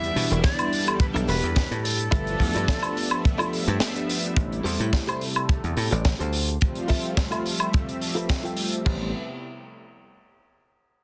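A punchy, foam-muted slap bass, thumbed dry and placed up front, drives this groovy, sensual nu-disco cut from a longer piece, set in A minor at 107 BPM in 4/4 with a light sixteenth-note swing. A tight funk kit with a high-tuned snare, hi-hat, crash and woodblock sits mid-forward in a small room, with the kick joining at 0.4 seconds. A breathy jazz flute with vibrato and a crisp chiff carries the melody through tape echo over the opening drop until 3.8 seconds, while a mellow, very quiet vintage string machine holds sustained chords beneath it until 4.4 seconds. Throughout, a bright, clean guitar recorded direct picks a riff through lush chorus, a low-pass filter and tape echo, with a filter sweep from 4.4 seconds, and a smooth, detuned sawtooth pad with chorus and tape echo fills out the harmony. The chords move from Em7 and G13 to Am7 and Fmaj7 before returning to Am7, all within a dense, heavily limited modern master.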